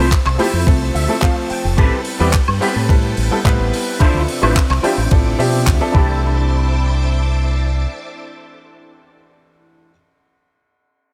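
A straight 4/4 nu-disco groove, cut from a longer piece, rides on a thumpy, sampler-style electronic kick and a tight, dry funk kit of handclaps, hi-hat, bright ride cymbal and woodblock, both in a small room, until the drums drop away near 6 seconds. Up front, a fingered electric bass with an envelope filter holds the low end while a twangy, picked electric guitar, also envelope-filtered and treated with chorus and delay, plays a riff; a clean guitar fill appears around 0.7 seconds, and a clear, short-sustained baby grand piano with delay and sidechain pumping accompanies through Fmaj7, Am9, Dm9 and C69. Behind them, a lush vintage string machine with a sawtooth, sub-octave tone, soft attack and chorus sustains chords that also pump with the sidechain, giving the whole a groovy, sunny mood.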